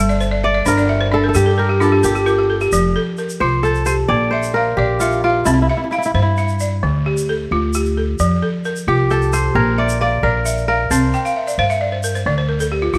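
Close, detailed microphones in a moderate recital hall capture this hypnotic West African string and xylophone piece in F major, cut from a longer performance and moving at 88 BPM in a straight 12/8. Up front, a bright, fingerpicked kora carries the melody and takes a solo in the opening 2.7 seconds, while a buzzing balafon played with hard rubber mallets spins woody arpeggios and adds fills at the start and from 11.1 seconds. A dark, thumpy pizzicato upright bass on gut strings anchors the progression from G minor through F, B-flat, C and D minor, with a grainy, band-limited tube shaker sitting low in the mix behind them.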